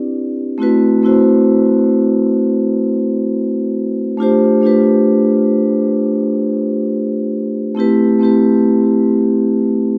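The recording has the rough, intimate feel of a home demo, with light reverb and the boxy ambience of a small room wrapped around a single instrument. It is a nostalgic, mellow hip hop fragment, cut from a longer piece, built entirely on a solo vibraphone played with medium hard mallets and the motor off, so its metallic, ringing tones sound warm and still. The vibraphone sits up front in the mix, moving between A3 and C5, and a tape echo trails each struck note with a worn repeat. The harmony drifts from Cmaj7 into Am69 at 0.6 seconds, then to G7sus4 at 4.2 seconds and Am9 at 7.8 seconds, giving the passage a dreamy, unresolved colour. Tuned to A4 = 442 Hz, the whole ten seconds feels like a hazy, reflective sample waiting for a beat.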